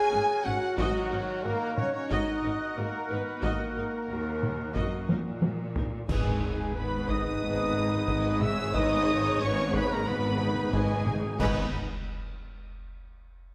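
A straight 4/4 pulse at 90 BPM drives this relentless, dramatic epic orchestral film cue in G# minor, where distant, lush violins carry the melody over softer violins, a very quiet airy flute line that stops at 5.4 s, warm French horns and tight woodwinds holding chords, dark trumpet stabs, violas in accompaniment, focused cellos and double basses on the bass, compressed, saturated taiko drums struck with hard sticks from 0.8 s, round soft-mallet timpani that return with a fill at 6.1 s, and dark clash cymbals with concert bass drum, all set in a wet scoring-stage reverb.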